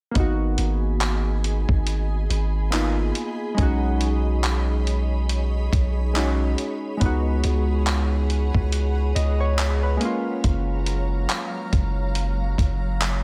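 A deep, sine-toned 808-style bass sits up front in this sensual, longing contemporary R&B excerpt, entering at 0.2 seconds with a gritty, compressed sampler-style drum kit whose thumpy kick, hi-hat and handclaps were re-recorded in a large room and carry a swung feel. Round analog keys with chorus and a filter sweep play the accompaniment over G#m7, B69, C#7sus4 and F#maj7, while a cloudy, detuned granular pad with its own built-in reverb arrives with a slow attack at 0.7 seconds. The mix otherwise stays dry, keeping the low end and drums close.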